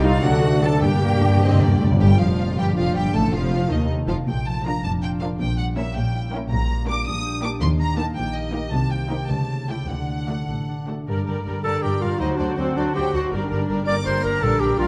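Lush, bowed violins carry the melody of this fast, dramatic romantic orchestral movement, with a second violin line beneath it and a focused, smooth-topped sound shaded by vibrato. The music moves in a restless, rubato 6/8 at around 99-110 BPM to the dotted quarter, in B-flat major before turning to G minor at 6.5 s. Violas supply warm accompaniment, while a bright concert harp rings out thumb-plucked arpeggios, and a clear double bass section and a woody cello section, set further back, share the bass. At the very start, a distant, roomy French horn section sustains dark chords, and calf-headed timpani played with medium mallets add a fill from 0.8 s. A solo clarinet joins up front at 11.6 s with a clear second line in classical style, all captured with close, detailed microphones and light reverb in this extract from a longer piece.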